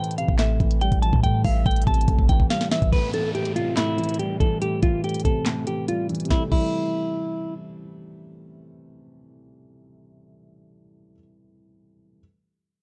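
A dry, dark mix with little reverb opens this brooding, melancholic trap excerpt, cut from a longer piece and riding a half-time feel over an Am7 chord. Up front, a clean semi-hollow electric guitar carries the melody through a low-pass filter until 7.5 seconds, while a mellow, boxy concert grand piano, also filtered, holds the low accompaniment to 12.2 seconds. The produced trap kit pairs a knocking kick with a sharp snare, crisp hats, handclaps and crash, playing a fill from 1.2 seconds and a break near the end of its run at 6.6 seconds. A deep, boomy 808-style bass with a fast attack and sine tone sounds briefly early on, and a very quiet, breathy flute-like synth lead with chorus and vibrato flickers for a moment. An electronic downlifter sweeps through the middle stretch as the arrangement moves into a new section.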